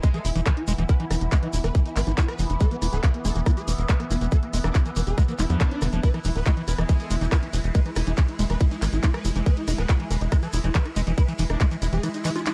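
Intense and alien, this psychedelic trance excerpt drives on a tight, up-front electronic kick and a punchy sawtooth sequencer bass with tube saturation, while a bright, detuned swarming rave lead with chorus, phaser and delay carries the melody over a resonant overtone-sweeping drone of sustained chords, a squelchy liquid acid bass riff with filter sweeps sits in the background, a very quiet metallic wobble bass adds a distorted second line, and a layered electronic kit of handclaps, hi-hat, ride cymbal and rim click plays alongside a grainy, close shekere in a dark digital ambience.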